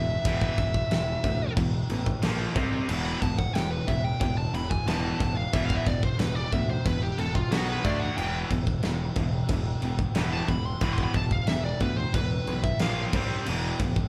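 A dark, high-gain lead guitar solo opens this aggressive, heavy metal piece, cut from a longer track, over two bright, distorted rhythm guitars riffing in the background, one of them compressed, and a growly picked electric bass. A big acoustic drum kit joins at 0.2 seconds, up front with a punchy kick, a medium-tuned snare and crash cymbal, its smooth sound carrying a rolled-off top. The band sounds as though it is playing live in one room under light reverb.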